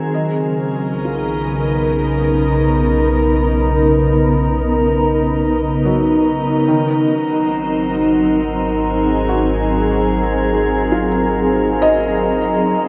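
Luminous and warm, this ambient passage, cut from a longer piece, drifts in free time under a huge, wet reverb with a long tail. A glassy FM pad sits up front with sustained chords, its slow attack and long release thickened by ensemble chorus, moving from Bmaj9 to Ab7 at 6.6 seconds. Beneath it, a deep, ominous drone enters at 1.2 seconds, rumbling and nasal with a detuned, ring-modulated edge and a dark character. A felt-muted upright piano fades in from the start, its soft, intimate arpeggios set in the background and trailed by a diffuse ambient delay. A glass harmonica also fades in from the start, adding a pure, smooth, close-miked texture that stays dry and full against the wash around it.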